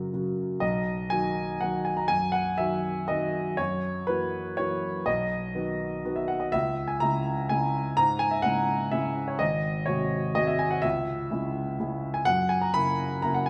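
A solo grand piano, present and up front with long sustain, carries this elegant, graceful classical waltz in B major at 124 BPM in 3/4, its uneven beats and rubato giving the dance a supple, breathing lilt. The harmony moves from B through F#7 to C#m and G#7 before returning toward F#7, with the piano spanning from deep bass to its upper register. A moderate recital hall reverb surrounds the instrument across this short passage, cut from a longer piece.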